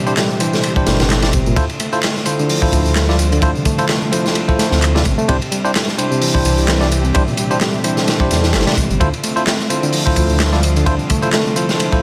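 Swung sixteenths drive this gritty, swaggering breakbeat excerpt, where a crunchy, saturated drum kit with a tight kick and dark cymbals sits up front beside layered electronic tambourine and handclaps, while a reedy electric piano riff with tube saturation and delay and bell-like tine electric piano stabs with delay ride over a deep, rumbling detuned saw bass that enters at 0.9 s and a dark, bowed chamber string section holding sustained chords in the background with sidechain pumping, all shifting between Cadd9 and Dm7 in a lightly reverberant space.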